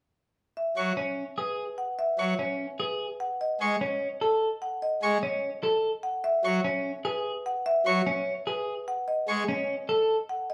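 A marimba struck with medium hard mallets opens at 0.6 s, carrying the melody in this meditative yet urgent minimalist classical pattern piece, cut from a longer work, pulsing at 296 BPM in eighths in 7/8 with a straight feel in C# minor. From 0.8 s a majestic full pipe organ with brilliant mixtures and baroque voicing, audible chiff and close presence supports it, while a single bowed violin plays high arpeggios with vibrato, portamento and a smooth, expressive top. A bright, twangy, compressed twelve-string electric guitar adds clean picked arpeggios from 1.0 s, all set in a moderate large studio reverb.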